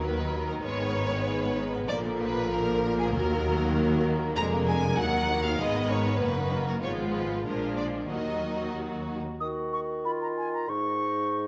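A quick, dramatic and restless classical-period orchestral movement in Eb minor at 96 BPM in 2/4, with a rubato feel and a dark progression through Abm, Bb7 and a diminished chord, heard as a brief cut from a longer piece. Up front, a rich, focused violin section carries the melody while a smooth, distant second violin section, an intense viola section, a tight, mellow French horn section in the background, a lush cello section and an expressive double bass section support it, all strings bowed with vibrato. At 9.4 s the strings and horns give way to a vintage-toned clarinet, an airy silver flute and a close, up-front bassoon, all bathed in the wet reverb of a scoring stage.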